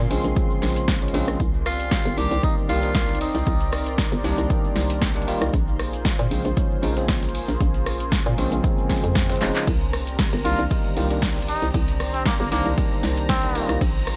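An overdriven electronic kick and a punchy analog drum machine of handclaps, hi-hat, ride, rim clicks and snare drive this smooth deep house excerpt at 116 BPM with a light swing in C minor, joined by a grainy cabasa and a very quiet, gritty sampler-style kit of hi-hat, shaker and snare. A hollow, knocking FM bass, a bell-like tine electric piano playing stabs with dub echo, and two mellow background pads, one chorused and warm, the other ethereal with reverb and phaser, pump against the kick over chords moving between Bbm9 and Cm9. A breathy, raspy tenor saxophone carries the melody from 1.7 seconds, a faint electronic swell leads into a shimmering string-machine violin layer at 9.7 seconds, and a veiled cup-muted trumpet with delay takes the lead from 10.4 seconds.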